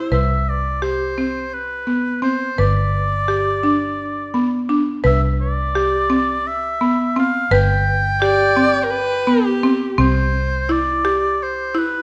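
Moving in a straight 7/8 at 170 BPM in eighths, this shimmering, hopeful stretch of contemporary chamber music is cut from a longer piece, with chords cycling through C5, G, Cmaj7 and G before settling on C at 10.0 seconds. A buzzing, woody marimba struck with hard mallets spins bright arpeggios up front over a dark, round, foam-muted vintage electric bass, while a clear oboe carries the classical-style solo melody with light vibrato. A single bowed viola, rich and expressive with vibrato and portamento, adds a close second line from 8.2 to 10.0 seconds, all set in a moderate scoring-stage reverb.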